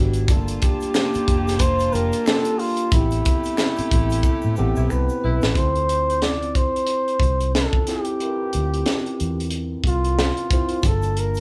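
A gritty, overdriven tine electric piano with phaser, reedy gut-string studio strings and a dark, foam-muted fingered bass open this introspective, soulful neo-soul and R&B excerpt at 91 BPM with a swung 16th-note feel, joined at once by a tight, up-front funk kit with a high-tuned snare and a background egg shaker with handclaps. A breathy, vibrato-laden flugelhorn carries the jazz-style melody over Gm9, Am9 and Dm9 chords, while a smooth horn section adds brief stabs during a band accent and drum fill just before the strings and percussion drop out at 5.5 seconds. The percussion returns at 10.8 seconds as the harmony settles back on Gm9, and the whole band sounds as if playing live together in a large studio room with moderate reverb.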